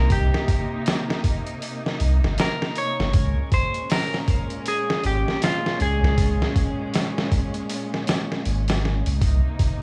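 A swung trip hop groove at 79 BPM in 4/4 sets a brooding, cinematic tone, driven by a gritty, tape-warm, pitched-down sampler-style drum kit with a thumpy kick and medium-tuned snare sitting up front in studio reverb, under a deep, round sub bass pushed through tube saturation. Veiled, con sordino strings hold bowed chords with vibrato while a bright, clean, picked electric guitar carries the melody through lo-fi sampler grit and tape echo until it stops at 6.5 seconds. Vinyl crackle and room ambience hang over the harmony as it shifts from Cm7 to Bbm7 and back in this short cut from a longer piece.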